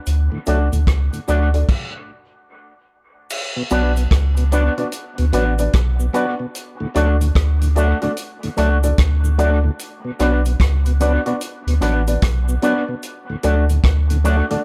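A deep, round sub bass, a punchy vintage drum kit of kick, rim click, hi-hat and crash, and a close cabasa open this meditative, hypnotic roots reggae excerpt at 74 BPM in B minor, with a swung sixteenth-note feel and a stop from 1.7 to 3.3 seconds. A lightly overdriven tonewheel organ with slow rotary speaker and key click sits in the background, while a bright, twangy electric guitar through an envelope filter adds vibrato and dub echo, and a dark, woody upright piano plays short stabs with audible action noise. The dry, echo-heavy mix keeps the bass and drums up front as the harmony alternates between D and B minor.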